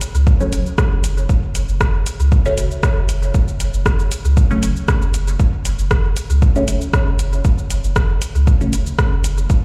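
Dub techno at 117 BPM in F# minor, cavernous and hypnotic, with a deep, up-front electronic kick arriving at 0.3 seconds beneath a metallic-hatted deep house kit of cabasa, hi-hat and rim click in small room ambience with dub echo, a round, soft sub bass pumping against the sidechain between F#1 and C#2, and a nasal, detuned sawtooth chord stab, muted and filtered, drifting through phaser and dub echo until 8.8 seconds, all set in a large studio reverb as if played on a big sound system in a bare room.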